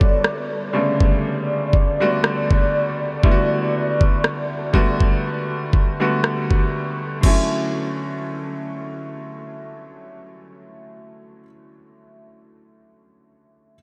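Dreamy and tender, this contemporary R&B passage from a longer piece moves with a gentle swing. A velvety, detuned synth lead carries the melody with chorus, vibrato and analog delay until 6.2 s, over a bright, worn grand piano and an up-front electronic kit of knocking kick, rim click and crash. The harmony shifts from Gmaj9 to Dmaj9 at 7.2 s, and after the drums stop at 7.5 s the piano rings on alone through a huge ambient reverb that soaks the mix.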